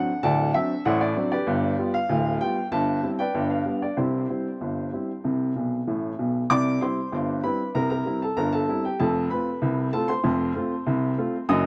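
A woody, open-toned upright piano plays lively, playful ragtime alone in a straight 2/4, its long-sustaining notes sitting up front with a touch of tape echo and light reverb in a dry, close 1970s-style studio sound, running through D7, G7 and C before a short fill at 5.6 s leads into a new section at 6.5 s that moves from C7 to F, all cut from a longer piece.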